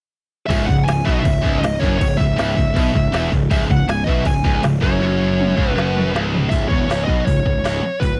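From 0.5 seconds a dark, heavy metal passage opens all at once: a high-gain lead guitar carries the melody with a warm tone and slapback echo, over background riffs from two distorted guitars (one double-tracked and bright) and a very quiet, scooped third guitar. A growly, fuzz-drenched picked bass and an overdriven electronic drum kit with a deep kick, woody snare and smooth hats drive the straight four-beat groove, with a drum fill from 5.0 to 6.5 seconds, after which one rhythm guitar drops out. The sound is dry and close, in the manner of a 1970s studio recording, and the clip is cut from a longer piece.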